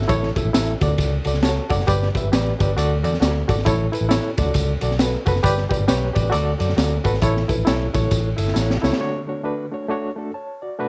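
A barky, reedy electric piano with light overdrive and fast tremolo comps through this joyful, danceable uptempo 1960s-style soul excerpt at 135 BPM in A mixolydian, riding a swung groove of crunchy, saturated breakbeat drums with dark cymbals and a high-tuned snare, a round foam-muted electric bass and a jingly tambourine, with a piano fill at 1.2 seconds, a drum fill at 8.6 seconds, and the piano alone on a closing Dmaj7 from 9.0 seconds.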